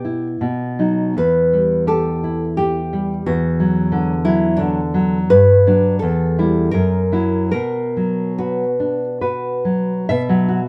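Romantic guitar duo in a rubato 3/4 at 62-91 BPM, this elegiac, melancholic fragment from a longer piece pairs a dark, woody fingerpicked nylon-string guitar carrying the melody between D4 and B4 on old strings with a warm, up-front thumb-plucked nylon-string accompaniment spanning E2 to E5, moving through Em, D/E, Gmaj7 and F#7 into B minor from 5.3 s, where the melody stops at 9.6 s and the accompaniment closes on a lone B5 chord at 10.1 s in light reverb.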